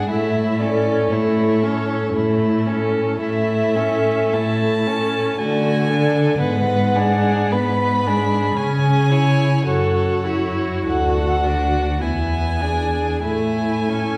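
Up front and close, the cello carries the bass with a dark, expressive tone, sliding between notes with portamento and vibrato. This lyrical, slow romantic movement for string quartet in A major moves in a rubato 3/4 at 46-59 BPM. The first violin's woody melody sits above a focused second violin with a smooth top and an even, distant viola accompaniment, all bowed with vibrato and heard from further back in a reverberant recital hall.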